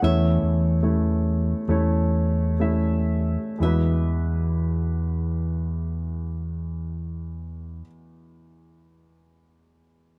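In a moderate studio reverb, this heartfelt, intimate folk excerpt in E major moves at 57-76 BPM in 4/4, slowing over its first 3.6 seconds as a fingerpicked flamenco guitar with fresh strings and plate reverb carries a soft melody over a woody, up-front upright piano and a round, punchy fingered electric bass, shifting from A/E to Eadd9 before the guitar and bass stop at 7.8 seconds and the piano plays alone until 10.2 seconds.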